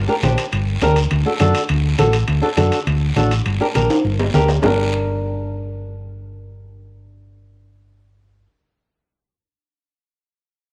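Driving and danceable, this brief cumbia excerpt in G harmonic minor moves at 204 BPM over Gm and D chords, with a dark, round hollow-body electric bass and a fingerpicked flamenco guitar carrying cassette-tape grit up front, while raspy guiro, damped low-tuned congas and ringing metal-shell timbales drive the groove until a drum fill at 3.9 seconds, after which the percussion stops at 4.7 seconds and bass and guitar continue alone in a small, lightly reverberant home-recorded room.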